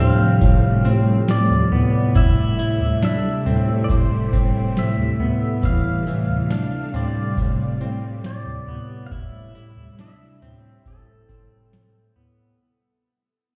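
A melancholic, haunting dream pop excerpt at 69 BPM opens on a vintage, mellow string machine of phased and chorused violas, a dark, punchy bass clarinet holding A2, twangy clean electric guitar arpeggios wrapped in lush chorus and digital delay, and a compressed pedal steel melody played with fingerpicks, slide and volume swells, while a metallic, ringing vibraphone with slow motor vibrato glints in the background until 5.7 seconds. A booming analog drum machine with a deep kick, tonal snare, tambourine and toms enters at 0.4 seconds as the harmony rocks between Fadd9/A and C6/A. The whole passage fades out gradually and sounds muffled, as if heard through a wall, with stone room reverb and light digital ambience.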